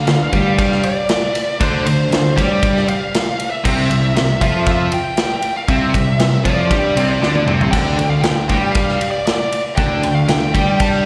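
A bluesy, dark-toned overdriven lead guitar carries the melody across this brooding 11-second cut from a quiet-loud alternative rock piece in D minor at 118 BPM, its distortion trailed by slapback and tape echo. Beneath it, a punchy fuzz bass and a big, up-front rock kit with a punchy kick and medium-tuned snare drive the groove. A cranked stack guitar, a compressed fuzz guitar and a very quiet double-tracked distorted guitar stack bright riffs in the background, with a drum fill at 7.2 seconds leading from Dm7 and Cadd9 into a closing D5, all heard through the small-room ambience of a live gig.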